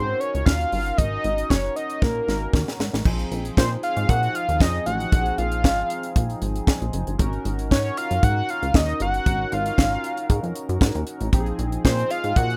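Slick, funky early-eighties boogie funk, cut from a longer piece and heard as a rough home demo with light reverb, where a fat, warbling analog lead with chorus, vibrato and slapback echo carries the melody over a glossy, nasal chorused polysynth and a punchy, plucky analog bass, while a tight, dry funk drum kit with a high-tuned snare enters at 0.2 seconds and plays a fill from 2.0 to 3.1 seconds, leading into the shift to the next sus4 chord.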